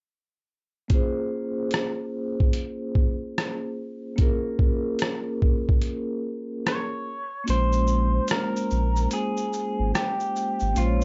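A soft-mallet vibraphone, metallic and ringing with a slow motor vibrato, filtered through a cassette-tape haze, opens this hazy, reflective lo-fi hip hop excerpt in Bb dorian at 73 BPM, alongside a gritty, compressed boom bap sampler kit of thumpy kick, hi-hat, rim click and shaker with a swung 16th feel, all resting on a Bbm7 chord. At 6.7 seconds a dark, slightly broken-up electric guitar takes the melody through a small old amp, and at 7.5 seconds the kick drops out as a deep, round sine sub bass enters. The production is dark and mellow under light reverb, with the drums sounding re-recorded in a large room.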